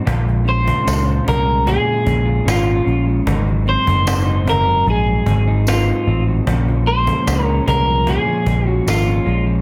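A slow, straight 4/4 pulse at 75 BPM sets the pace for this lonely, mellow bedroom-pop fragment in Bb minor, cut from a longer indie pop piece. A woody, distant cajon with faint snares sits back in a large room, while a bright, jingly tambourine adds sparkle from about 0.9 seconds. Up front, a vintage muted picked electric bass gives a dark, round, punchy low end with a foam-muted, amped tone. An electric guitar at the edge of break-up, fingered and compressed, fills in the accompaniment through lush chorus and vibrato as the harmony moves from Bbm7 to Ab7 and back. Over it, a twangy, lo-fi lead guitar through a small old amp carries the melody from 0.5 seconds, picked and slightly broken-up, with subtle chorus and slapback echo. Light reverb and a dense, heavily limited modern master round out the sound.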